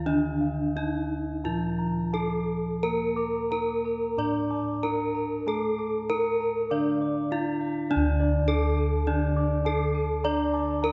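Heard in a reverberant church or concert hall, with a long, wet tail and a top end that stops short of real air, this Javanese gamelan passage, cut from a longer piece, feels stately and hypnotic. It moves at roughly 87-103 BPM in a straight 4/4, in D pelog. Up front, a bright bronze metallophone carries the melody, struck with a horn mallet, its paired tuning giving off shimmering beats. Beneath it, a second metallophone plays a soft, mellow accompaniment with padded disc mallets and a boxy small-room colour. Round, padded bossed gongs hold the bass, while higher bossed gongs, dark and smooth, spin arpeggios from the opening moments. A wooden-mallet metallophone joins those arpeggios in the background at 2.8 s, and the music moves into a new section at 7.9 s.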